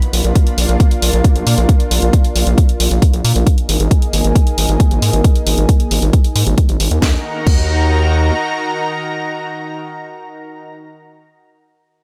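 Uplifting trance at 135 BPM in Eb harmonic minor, tuned to A4 = 441 Hz, this driving, bittersweet excerpt moves from Bb through Absus2 to Ebm under light reverb. A lush, thick, detuned unison pad holds bright sustained chords with chorus, sidechain pumping and a filter sweep, while a gritty, saturated synth bass, also pumping, sits up front beside a punchy electronic kick. A house kit adds a cracking snare, warm hats and crash cymbal; the drums stop at 7.6 seconds and the bass at 8.3 seconds, leaving the pad alone until the excerpt ends at 10.6 seconds.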